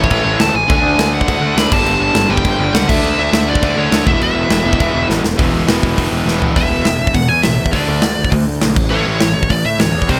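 Rebellious and upbeat, this punk rock excerpt charges along at 204 BPM in a straight 4/4, with a high-gain lead guitar up front carrying the melody over a compressed distorted electric guitar riff, a biting overdriven guitar in the background, a growly fuzz-picked bass and a big rock drum kit with a punchy kick, medium-tuned snare and bright cymbals, while a dark, double-tracked, very quiet fuzz guitar slips in at 0.7 s and drops out at 6.6 s, drum fills land at 5.1 s and 6.3 s, and the whole mix sounds dry.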